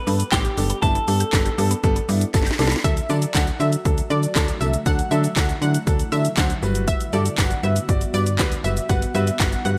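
A straight 4/4 dance-pop groove, energetic and confident, is driven by a punchy, overdriven house kit with gated reverb, cracking snare, hi-hat, handclaps and shaker, by a snappy slap-like FM bass and a deep-toned grand piano that both pump under sidechain, and by a very quiet, jingly tambourine. A twangy twelve-string electric guitar with digital delay and a woody mallet-like synth pluck open the piece, and a drum fill at 2.3 seconds leads into a round, chorused analog pluck melody at 2.8 seconds. The harmony moves from Gadd9 to D and then Gmaj7, and an ethereal pad enters in the background at 3.8 seconds, all in a bright 1980s-style digital production with light reverb.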